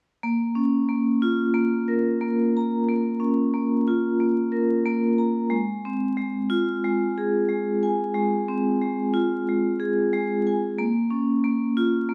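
Tough and moody, this hip hop fragment rolls at 91 BPM with a swung 16th feel in Bb minor, where a lone vibraphone played with medium hard mallets carries the accompaniment from 0.2 to 12.1 seconds, its bright, metallic ring and slow motor vibrato sitting up front yet colored by cassette tape and high- and low-pass filtering, shifting from Bbm to Fm/Ab at 5.5 seconds and back to Bbm at 10.8, all inside a dark production with echo chamber reverb and vinyl crackle.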